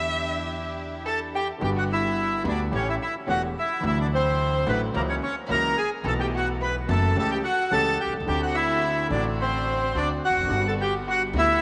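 In a rubato 4/4 at 108 BPM, this nostalgic, passionate tango in G major opens with a very quiet, distant bowed violin full of vibrato and portamento, before a reedy, boxy bandoneon enters up front at 1.1 s to carry the melody through tape echo, over a warm concert grand piano with deep bass and short sustain, a woody, dark pizzicato upright bass, and rich, earthy chamber strings adding smooth-topped stabs in the background, within a moderate plate reverb.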